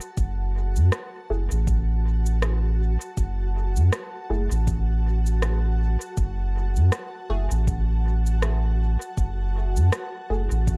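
A dry, echo-heavy mix opens this meditative, spacious slice of ambient dub, cut from a longer piece and resting on a single minor chord with a gently swung feel. A cloudy, evolving granular pad in its own reverb and tape-warm electronic shaker and rim clicks carried by dub echo start at once, while a round, soft sub bass sitting up front and a deep, layered electronic kick join at 0.2 seconds. From 1.3 seconds a muted, dark filtered chord stab with a moving notch drifts through phaser, analog chorus and dub echo.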